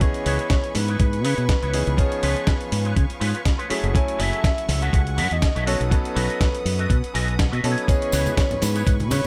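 Sensual and sleek, this nu-disco passage is cut from a longer piece and moves with a light 16th-note swing in 4/4 over a C#m7 to C#7 to F#m9 to B7 progression. A gritty, thumpy electronic kick sits up front beside a dusty soul sampler-style kit with compressed hi-hat and a fat snare, while a fingered electric bass, direct and prominent, pumps against the kick from 0.3 seconds. A bright concert grand piano with a brilliant top and deep low end plays accompaniment through a delay, and a rich, smooth string section holds sustained, vibrato-tinged chords in the background, also pumping with the kick. The melody comes from a soft, round octave-layered synth lead with a sub octave, chorus and dub echo, and a twangy envelope-filtered electric guitar riff with ensemble chorus threads alongside it. A clean electric guitar fill appears at 6.9 seconds, and tambourine and congas with hard, acoustic hands join at 7.9 seconds, all set in a small room reverb.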